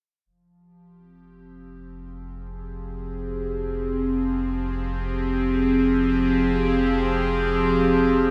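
Ambient space music in free time, this mysterious, expansive excerpt opens on a round, deep analog bass holding a low F from 0.3 seconds, sitting dark and quiet beneath everything that follows. At 3.0 seconds an evolving, morphing wavetable pad enters up front with bright sustained chords, its slow attack and long release colored by phaser, built-in reverb and shimmer reverb. The dreamy mix is soaked in a huge ambient reverb with a 7.7-second decay and carries a cassette-tape character, as both parts fade in over a single F minor chord.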